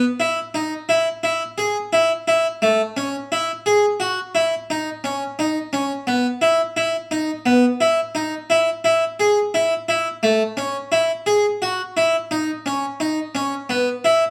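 A full, plucked French-style harpsichord with two sets of strings sits up front and plays alone for this pensive, hypnotic 14-second excerpt of contemporary instrumental music, moving in a straight 11/8 at 173 eighth-note beats per minute within a compact middle register, bathed in a wet studio reverb.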